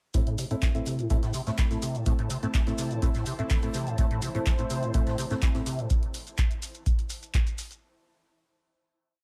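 Acid house at 125 BPM in A minor, hypnotic and gritty, with a deep electronic kick pounding four-on-the-floor up front, a squelchy, resonant acid bass riff with accents and slides under tube saturation and chorus, dotted-rhythm chord stabs soaked in dub echo, tape-warm drum machine hats and claps, grainy hand-played maracas, a very quiet looped indie breakbeat, a blurred granular cloud pad arriving at 2.0 s and a dark detuned analog pad holding a high C5 from 4.3 s, both pumping against the kick.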